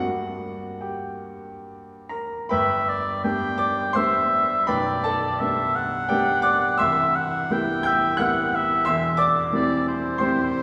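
Melancholic and elegiac, this romantic classical duo moves in a rubato 3/4 at around 85 BPM in G major. A clear, open baby grand piano begins alone on a G minor chord, spanning a broad low-to-high register in accompaniment, before a warm oboe enters up front at 2.5 seconds with a light vibrato, singing its melody over a brightening progression through G, G/B and Cmaj7 to C/E. A long, wet church reverb of 3.1 seconds surrounds the pair, and the passage is cut from a longer piece.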